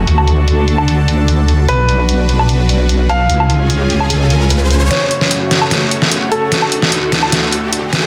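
Heavy wobble dubstep in a half-time feel, aggressive and dense, with a saturated, detuned sawtooth wobble bass up front until 4.9 seconds, a lush phaser-tinged supersaw pad holding sustained chords, a deep-snared, layered electronic drum kit with filtered hats, woodblock and room, background downlifter and riser effects, and a clear, intimate baby grand piano with audible action noise carrying the delayed melody from 1.7 seconds before a build-up with a drum fill and a filter sweep on the piano takes over at 4.9 seconds.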